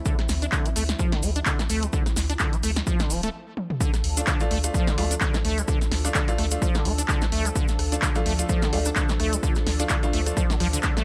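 Acid house with a raw, trippy mood, this short cut from a longer piece rides a swung sixteenth-note groove in four. A squelchy, resonant sawtooth acid bass drives the riff with tube saturation, ensemble chorus and tape echo, while a round, deep analog bass sits beneath it, both pumping against the dry, punchy electronic kick that stands up front. A punchy analog drum machine fills in handclaps, hi-hat, rim click, snare and toms, joined by a grainy, close acoustic cabasa, and a lush, detuned unison pad holds sustained chords in the background through chorus, phaser and sidechain pumping. After a stop at 3.3 seconds and a drum fill at 3.6, the drop lands at 3.8 seconds, and from 4.2 seconds a brilliant concert grand piano adds intimate stabs with audible action noise and tape echo. The mix is dry and close, with little reverb around the parts.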